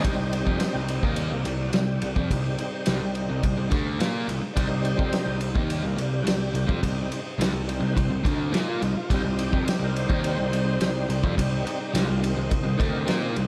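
Classic rock with a driving, swaggering feel, this excerpt sits on a single C minor chord as a bright tonewheel organ takes a solo, its full, shouting tone carrying key click, light overdrive, chorus vibrato and a slow rotary speaker. A crunchy overdriven guitar plays a riff with slapback echo over a growly fuzz bass, while a vintage drum kit of kick, snare and ride sounds punchy and up front, with dark cymbals and a pumping small-room character. A lush hall reverb gives the whole a big arena sound.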